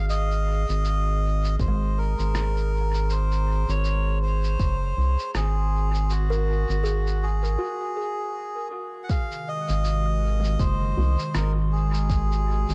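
A swung, unhurried dub groove rests on a deep, round analog bass up front, with muffled, pitched-down electronic shaker and rim click soaked in cassette grit and dub echo from the start, and a layered, tape-warm electronic kick joining at 1.6 seconds. Over this short, peaceful, hazy ambient dub passage, a reedy, breathy melodica carries the tune through dub echo, while a woody kalimba plucks arpeggios through tape echo and a warbling, nostalgic pad holds chorused chords in the background. After a brief break at 7.6 seconds, a very quiet, dark filtered chord stab slips in at 11.0 seconds.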